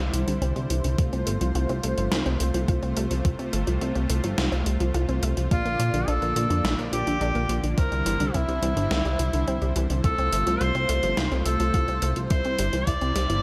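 Light reverb surrounds the mix, with an up-front, glossy synth bass and a distant, roomy tenor saxophone floating above. This uplifting, dreamy synthwave excerpt moves in a straight 4/4 over chords that pass from Cadd9 to F and Bb, then back toward C. A smooth, detuned supersaw holds sustained chords with sidechain pumping, while a round, nasal analog pluck plays bright arpeggios in the background through chorus and digital delay. The retro, chorused bass carries tube saturation and its own sidechain pumping, and a gated 80s digital drum machine supplies hi-hat and snare with gated reverb and overdrive, joined at 1.0 seconds by a thumpy, overdriven electronic kick. At 5.5 seconds the clear tenor saxophone enters as a solo melody with light vibrato and delay, in a classical style.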